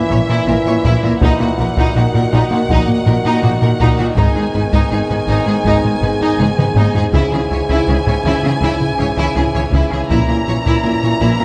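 Tense and relentless, this cinematic cue, cut from a longer piece, blends orchestral and electronic scoring at 81 BPM in G# minor. A lush upper violin section carries the melody with a soft attack, vibrato and a smooth top, while a second, brighter and more intense violin line runs beneath it. Violas, cellos and double basses fill the background with even, bowed vibrato, joined by sustained chords from bright trombones and darker French horns. Underneath, a round, deep analog bass with a fast attack and wave-folded edge drives a riff throughout, and a taiko ensemble pounds with heavy sticks, breaking into a fill from 6.4 to 7.1 seconds. The harmony moves from A#dim through D#m/A#, G#m and C#m before returning to A#dim at 10.1 seconds, all set in a moderate scoring-stage reverb.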